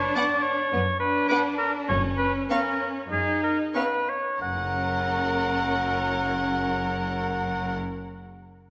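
A clear, up-front oboe with light vibrato opens this cheerful, graceful classical-period orchestral passage in 4/4, joined at once by close, smooth violas, distant bowed cellos and intense double basses; a warm, far-off violin section enters at 0.1 s and a rich, vibrato-laden violin melody soars above at 0.2 s, the rubato slowing through the first 4.4 s before a new section arrives, the ensemble bathed in wet concert-hall reverb.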